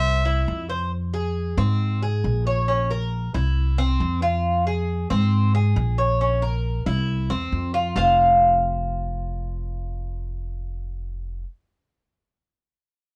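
A worn, warbly cassette-tape sound colours this short clip from a longer piece, with drifting pitch and a light reverb. The style is Cuban son and guajira, danceable and sultry in mood, in a straight four-beat feel. A warm, pop-style solo trumpet sounds only briefly at the very start, sounding a high note with light vibrato until 0.7 seconds. A bright, metallic Cuban tres plays picked arpeggios on its doubled strings throughout, some pairs in octaves, as a pizzicato upright bass with gut strings gives a woody, dark, thumpy low end. The harmony cycles through C, Fm, Ab and Bbm, then at 8.0 seconds the music moves into a new section built on an open F5 chord.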